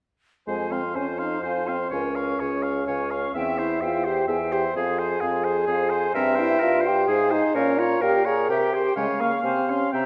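At 0.5 s a wind quintet launches together into a stormy, restless classical-period movement in F minor, a quick 3/4 at 128 BPM played with rubato, with the hollow, tongued concert flute carrying the melody with vibrato over the oboe's warm, smooth-topped second line. The French horn sounds clear in the accompaniment while the clarinet sits in the background, and the bassoon stays up front on the bass with a light vibrato. A wet recital-hall reverb surrounds the ensemble as the harmony moves from Fm through Db and C7/G to Bbm before settling on Fm/C, and the passage is cut off at 10.1 s as part of a longer piece.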